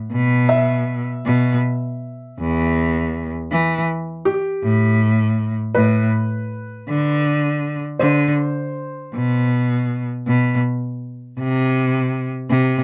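This acoustic folk-pop ballad in a lilting 6/8 feels nostalgic and intimate, a short passage cut from a longer piece. A felt-muted upright piano plays soft, mellow arpeggios in a high register, its thin felt tone touched by a slapback echo and sitting lower in the mix. A single bowed cello carries the bass line up front, warm and focused, with a smooth top and vibrato. The harmony moves through B5, Em and Asus2, briefly drops away from any defined chord, and then touches Csus2/D. The piano stops at 9.5 seconds, and the cello continues alone until 12.8 seconds, all captured with a dry, close sound that keeps the two players near the listener.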